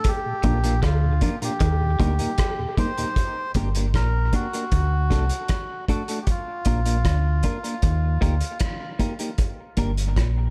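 A straight 4/4 groove at 77 BPM from a cloth-damped, thuddy drum kit with a tight kick and rolled-off top anchors this meditative, heavy dub reggae fragment in G minor, where a deep, round fingered bass sits up front, a reedy, breathy melodica carries the tune through dub echo until 8.6 seconds, and a clean electric guitar adds lush chorus and echo; in the opening seconds a distant, echoed cowbell, a soft tonewheel organ with rotary speaker and a bright, twangy picked guitar riff pass by, all wrapped in a dark studio reverb.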